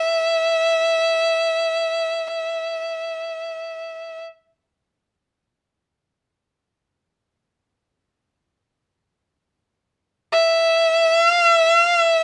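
A lone bowed erhu opens the recording in free time, its clear, smooth line sitting up front in the upper register around E5. The mood is calm and austere, in the manner of Japanese chamber music drawn from traditional style, with a single player shaping each note with vibrato and gliding portamento. The erhu sounds from the start until 4.2 seconds, then falls silent before returning at 10.3 seconds to carry on to the close at 12.2 seconds. The material is stated once and begins again at 8.1 seconds, giving the short passage a sense of a repeated, unhurried phrase. A light reverb surrounds the even tone, and the passage is cut from a longer piece.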